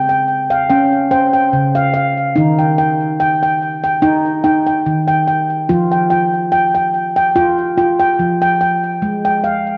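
World meditative tuned percussion at 72 BPM with a light swing, this gentle, calm excerpt features a solo handpan, ringing and mellow with a vintage, band-limited nitrided-steel tone played with soft fingertips, sitting up front with delay in a moderate echo-chamber reverb and a dark, warm production as the harmony moves from Db through Eb to Fsus2 before the 9.8-second cut.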